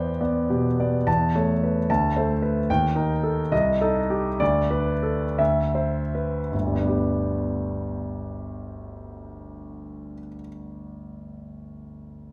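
A romantic classical character piece for solo grand piano in G major and a rubato 6/8 at 49-76 BPM (dotted quarters), cut from a longer work, with a warm, hopeful mood as the up-front, intimate piano, ranging from G1 to A5 with its action noise plainly audible, slows from 1.9 to 6.5 seconds through shifting chords like Em7, Eb and Am7b5/C before arriving on G for a new section, all set in a wet, large studio reverb.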